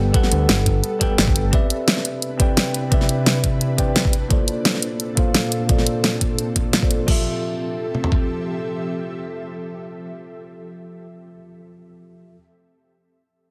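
Liquid drum and bass at 173 BPM in F lydian, this dreamy, lush excerpt from a longer piece moves over Gmaj9, Cmaj9 and Bbmaj9 chords before settling on Fmaj9 at 7.1 seconds. A bell-like tine electric piano plays the accompaniment through tape echo and a low-pass filter, with a filter sweep running across its first 7.1 seconds, while an ethereal, airy pad holds sustained chords with slow attack, ensemble chorus and tremolo. A smooth synth bass sits up front but sounds only until 1.5 seconds. Two drum kits share the rhythm: a gritty, compressed breakbeat sampler-style kit with a thumpy kick and toms, and a layered electronic pop kit with crash cymbal, hi-hat and a fat snare, the whole groove carrying a light swing on the 16ths. The pop kit drops out at 7.2 seconds and the breakbeat kit at 8.2, leaving the keys and pad afloat in light reverb and digital ambience.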